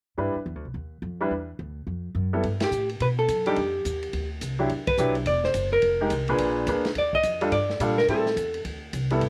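A brisk, swinging 4/4 groove carries this relaxed, warm small-group jazz excerpt, opening with a brilliant, open-sounding upright piano comping with long sustain and a touch of slapback echo over a woody, pizzicato upright bass with steel strings. At 2.4 seconds a smooth drum kit with dark cymbals, a medium-tuned snare and a boomy kick joins, and at 2.6 seconds a clean, dark-toned hollow-body electric guitar takes the picked melody, also with slapback echo, as the band hits accents there and at 4.8 seconds. The sound is dry and close, with piano, bass and guitar up front, while the harmony moves through rich extended chords such as Em9, Bb7b9 and Ebmaj9#11.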